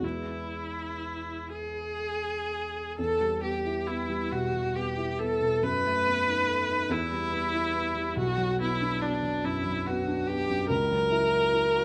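In a flexible, rubato 6/8 lilt at 40-49 BPM, this lyrical, serene romantic classical fragment in E minor sets a clear, smooth bowed viola melody with even vibrato up front against a dark, mellow baby grand piano accompaniment of long sustain, both heard close and detailed in a moderate recital hall reverb as the harmony moves from E through Em, B7/F# and Bm toward F#7/C#.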